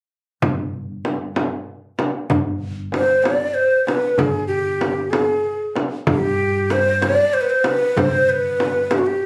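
A stately 6/8 pulse in slow dotted-quarter beats drives this fragment of a Persian modal ensemble piece, carried by a small, bright frame drum sitting close and dry up front, a deep tombak played with soft hands, and a woody, thumpy pizzicato upright bass underneath. At 3.0 s a breathy, end-blown ney enters close-miked and forward, with vibrato and a soft attack, and it holds on until 9.3 s, just after the other parts stop at 9.0 s. The recording sounds like a phone capture made in the room, with club reverb and light reverb.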